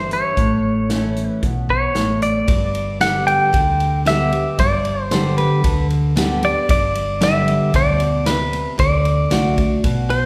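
Honky-tonk and classic country at 114 BPM in a straight 4/4 and G major, this short, sunny and nostalgic cut from a longer piece puts a twangy, compressed clean electric guitar up front on the melody over a bright, full-bodied picked dreadnought acoustic playing the accompaniment. A round, dark hollow-body bass, fingered and amped, anchors the low end while a natural country kit with a punchy kick, medium-tuned snare, hi-hat and ride keeps time. The chords move from A to G at 2.5 seconds and on to D at 8.8 seconds, all set in the lingering reverb of a recital hall.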